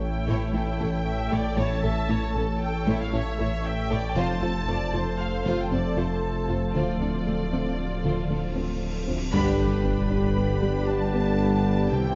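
In a straight 5/4 at 116 BPM, this futuristic, relentless hybrid orchestral-electronic film cue, cut from a longer piece, moves through A, F and Dm7 as a lush, distant violin section carries the melody over a vibrato-laden viola section, a second violin line in the background, very quiet cello and double bass sections, a bold chorused analog pad with a filter swell and moving notch, a thick, saturated detuned saw bass, and a soft, round pluck playing arpeggios. A huge, bright cymbal swell and sub drop begins at 8.6 s and leads to an accent and impact at 9.3 s, where the harmony lands on G and punchy French horns, roomy trombones and a mellow tuba join with sustained chords and bass. A wet scoring-stage reverb lends depth to the dark, warm production.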